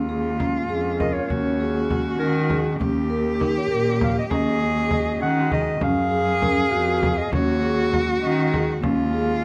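Hypnotic and restless, this contemporary chamber excerpt moves in an uneven 5/8 at 199 BPM in eighths, built over chords anchored on Eb that shift among Bbm7/Eb, Ab7sus4/Eb, Eb7 and Gbmaj7. A muted cello, veiled and con sordino with portamento, holds the bass while a nasal, woody cello sings a second line up front, a very quiet woodwind section sustains tight chords, a slightly out-of-tune celesta adds bell-like texture, and a soft-mallet vibraphone with slow motor vibrato ripples through arpeggios. A deep frame drum played with soft hands enters at 0.4 seconds, and a punchy, smooth-topped clarinet takes the solo melody from 1.0 seconds, all captured close and detailed in light reverb.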